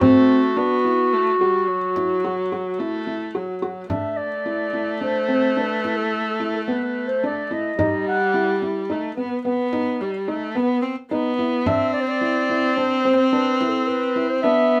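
Lightly reverberant and intimate, this pensive, hypnotic contemporary chamber piece in 7/4 sets a dark, distant classical clarinet melody up front over a woody, bowed viola second line with vibrato, mellow arpeggios from a felt-muted upright piano with audible action noise, and a small, close, dry frame drum struck with hard hands that drops out at 14.0 seconds.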